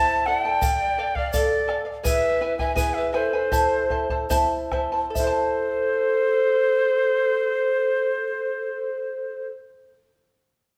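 Andean folk in A minor, this short cut from a longer piece moves in a straight 2/4 at 67-84 BPM with an earthy, festive mood, easing into a slowdown between 2.0 and 5.2 seconds. The cane quena carries the melody up front, airy and close-miked with tongued notes and vibrato, while a bamboo pan flute adds a second line, breathy and soft in attack with a touch of chiff. The charango sits up front as well, its fingerpicked double strings bright and shimmering, some of them doubled at the octave, over a progression from Am through Dm and E back to Am. A round, dry bombo and a grainy tube shaker add percussion in the first half, the bombo entering at 0.3 seconds and both stopping at 5.6 seconds, leaving the winds and strings to carry the second section. The ensemble plays live together in one large studio, and a generous reverb lends the whole band a roomy glow.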